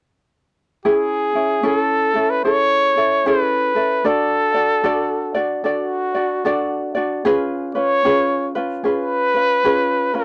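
A dry, close 1970s-style studio sound with light reverb frames this dreamy, sunny Hawaiian piece at 75 BPM in a swung 4/4, where a light, fingerpicked acoustic ukulele sits up front in accompaniment and a mellow, classical-style trumpet with light vibrato carries the solo melody from 0.9 seconds over Amaj7, D and C#7 in A major until the cut from the longer piece at 10.2 seconds.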